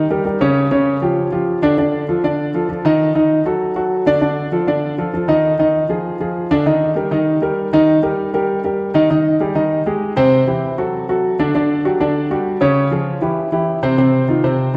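A solo concert grand piano opens on a rootless Eb7 voicing, setting a lively, sophisticated jazz mood at a brisk straight-feel pace in four. The instrument sits up front and sounds intimate and natural, with deep bass and audible action noise from the keys and hammers. A resonant concert hall reverb with a long tail surrounds the playing and lends it space. The first passage moves restlessly through chromatic and diminished harmonies before settling into Eb major for a second section at 6.7 s, which passes through Abmaj7, Am7 and a bare G5 and ends on a Cmadd11 at 14.0 s. The piano plays alone until 14.8 s, in a short passage cut from a longer piece.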